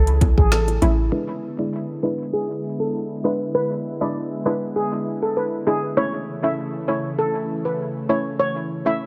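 A mellow, shimmering steel pan melody opens this bouncy, sunny dancehall excerpt at 99 BPM over a thick, warbling chorused pad, a deep, boomy 808-style bass and an up-front electronic afro-pop kit with a woody snare and metallic hats, plus dry, low-tuned bongos in the background; the bass and drums drop out by 1.1 s, leaving a hollow, nasal square pluck that entered at 0.8 s to carry on with the pan and pad through a filter sweep in an echo-heavy mix, as the harmony moves from A to E7 and returns to A at 6.0 s.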